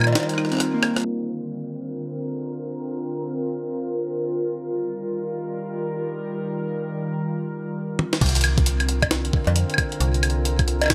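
A warbling, nostalgic pad sits up front through this glitchy, eerie IDM piece, its detuned sawtooth and triangle tones sustaining chords softened by chorus, phaser, built-in reverb and a vintage 12-bit sampler grit. The track moves at 134 BPM in 4/4 with a 62% swing on the 16ths, in C minor, alternating between F9sus4 and C9sus4 harmonies. In the opening moments a gritty, pitched-up jungle kit with a high-tuned snare, toms, hi-hat, rim click, cowbell, woodblock and crash plays a break and fill, while a soft, harp-like pluck ripples arpeggios through chorus and digital delay and a metallic FM bass makes a brief appearance. From 1.1 seconds the pad carries on alone under a filter sweep. At 8.0 seconds the compressed kit returns with a fill, joined at 8.2 seconds by a thumpy electronic kick and the fast-attack, decaying bass. The overall mix has a light reverb and a low-pass filter in this short excerpt cut from a longer piece.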